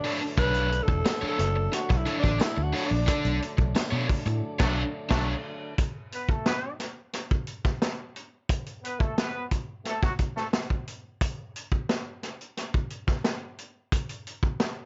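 A straight 4/4 funk groove at 88 BPM in B minor rides on a punchy vintage drum kit with dark cymbals and a high-tuned snare, and a round, foam-muted fingered bass, both up front, while a crunchy overdriven guitar with spring reverb and a background tonewheel organ with key click and lush chorus hold a Bm9 chord. A growling, breathy tenor saxophone solos over the opening with scooped notes and a raspy edge, a jingly tambourine sits in the background, and a band accent arrives at 3.1 seconds. A clear, vintage horn section with octave doubling enters at 4.6 seconds and carries the hypnotic mood past the chordless turn at 5.8 seconds, and the drums carry on to the end of this excerpt.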